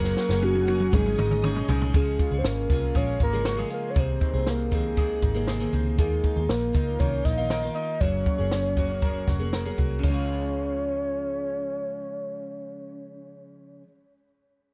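A warbling, nostalgic synth lead sits up front with chorus and vibrato, carrying the melody through this breezy, youthful stretch of jangly indie pop in Db major at 119 BPM, in a straight 4/4. Beneath it, a picked twelve-string acoustic guitar shimmers with full-bodied, octave-doubled jangle. An electric guitar through a small old amp adds twangy, slightly broken-up arpeggios with tape echo, while a vintage muted electric bass gives a round, foam-muted low end. A compact cocktail drum kit, dry and tight with a high-tuned snare and dark cymbals, opens with a fill and plays until 10.2 seconds. A silky string machine with ensemble chorus hovers in the background only for the first 1.9 seconds, and chords such as Gbadd9, Absus4 and Ebsus2 pass by within a close, dry 1970s-style studio sound.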